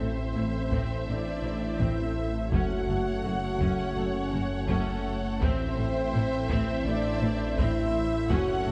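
A dark, warm production sits in a wet concert hall reverb, giving this short cut from a longer cinematic score a vast, futuristic air at 83 BPM in A dorian, moving from Am to F#m at 2.5 seconds and back to Am at 5.4 seconds. A distant, intense symphonic violin section carries the melody high between E5 and F#5, while a close, smooth studio violin section adds a second line and a focused, lush viola section fills the accompaniment. A mellow French horn section carries the sustained chords with a soft attack, joined by a very quiet, punchy trombone section and a very quiet analog pad with chorus and a long release. The low end blends orchestral and electronic weight: a thick, menacing detuned saw bass with a saturated, beating edge sits alongside a double bass section in the background, and a very quiet, lush cello section adds depth above them. Solo taiko drums struck with hard sticks enter at 0.7 seconds, close and dry but very quiet beneath the hybrid texture.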